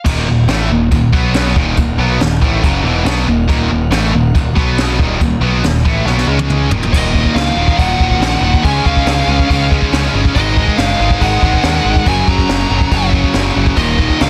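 Dark and relentless, this heavy metal excerpt stacks three picked high-gain rhythm guitars on a riff, two bright ones in the background and a double-tracked one very quiet, over a growling, overdriven bass up front and a distant, roomy brushed drum kit with a boomy kick and high-tuned snare, while a very quiet pipe organ holds light, chiffing flute-stop chords, and after a drum fill at 6.1 seconds a distorted lead guitar with digital delay carries the melody from 6.9 seconds in a dense, heavily limited mix.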